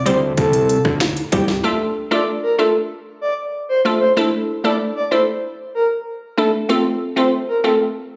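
Dancehall at 95 BPM in D minor, this excerpt from a longer piece has a tough, sultry mood over a straight 4/4 feel. An island pop drum kit, electronic and overdriven with a tight kick, sharp snare, smooth hats, finger snaps and rim clicks, drives the opening alongside a fat analog bass of detuned, wave-folded sawtooth and triangle tones with a plucky filter. Both drop out at 1.6 s, leaving a glassy wavetable pluck with a crystalline, nasal edge, filter sweep and sidechain pumping to carry the accompaniment. A breathy, flute-like synth lead floats above it with soft attacks, vintage vibrato and warbling chorus, its phrases trailed by a digital delay. The harmony moves from C to Dm, then Asus4 and F. The sound is up front yet bathed in a lush hall reverb, with the roomy character of a phone capturing a club.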